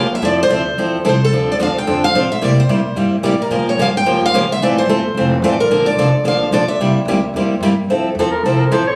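Two up-front picked steel-string acoustic guitars, one carrying a bright melody with audible finger squeak and the other picking a boxy accompaniment, open this short, swinging and playful jazz manouche clip at 219 BPM in F major alongside a woody, thumpy gut-string upright bass, before a raspy, growling soprano saxophone with vibrato and scooped notes enters at 8.3 seconds for a brief solo, all caught on a phone in a club room with compression.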